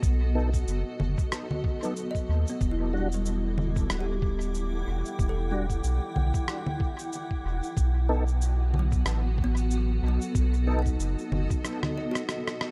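A swung 93 BPM 4/4 groove of thumpy, pitched-down electronic kick and muffled shaker, congas and rim click drives this spacious, hazy ambient dub excerpt in E minor, where a round, up-front sine sub bass sits under a cloudy granular pad, woody kalimba arpeggios trailing dub echo, and clean tonewheel organ stabs through slow rotary speaker from 0.3 to 10.8 seconds, moving from B7 to Em9 and back before the bass drops away at 11.5 seconds and the kick at 11.6 seconds for a closing drum fill in a dark, warm mix.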